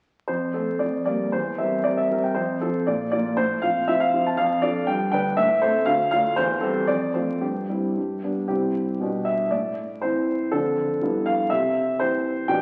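Heard through the crackle of a very old 78 rpm record and the wet reverb of a recital hall, this cheerful, playful fragment of a classical-period piano sonatina has a solo baby grand with a warm, open, up-front tone and long sustain, playing in 2/4 at 110-124 BPM with a rubato feel, tuned to A4 = 437 Hz, and shifting from F major to C major at 4.4 s before a new section begins at 8.5 s and closes on a C chord at 11.5 s.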